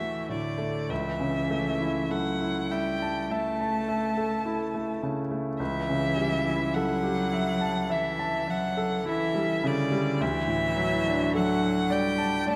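A rich, smooth violin sings the lyrical melody up front with even vibrato, while a single bowed cello carries a focused, warm second line beneath it. This tender, slow romantic movement for piano trio unfolds at 52 BPM in 4/4 with a rubato feel. A bright, brilliant grand piano, intimate and polished with long sustain and audible action noise, accompanies over chords moving from D through A/C# and A7/C# before returning to D at 10.2 seconds, all set in a moderate scoring stage reverb in this passage cut from a longer piece.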